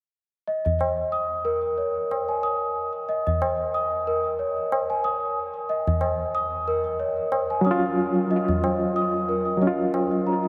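Trip hop at 92 BPM with a lightly swung 16th feel in Eb minor, this cinematic, brooding excerpt rests on a single Ebm7 chord. A large, bell-like celesta plays delicate arpeggios from 0.5 s, roughened by vintage 12-bit sampler grit, softened by a low-pass filter and trailed by delay, while a low-tuned tabla enters at 0.7 s, close and dry. At 7.6 s a reedy, barky electric piano comes up front with overdrive, fast tremolo and tape echo, all within a dreamy mix soaked in cathedral reverb.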